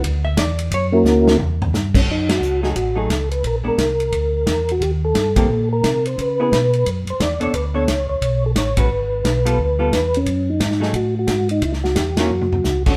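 A flute-like, percussive tonewheel organ carries the melody from 0.9 s through a slow rotary speaker and chorus vibrato in this soulful, late-night soul jazz organ trio excerpt at a swinging 176 BPM, after a dark, clean hollow-body guitar solo opens the excerpt until 2.1 s and then settles into accompaniment. Meanwhile, a round tonewheel organ with key click holds down the bass, and a tight, roomy drum kit with dark cymbals adds fills as the whole band hits shared accents, all captured live in one room with a short, wet reverb.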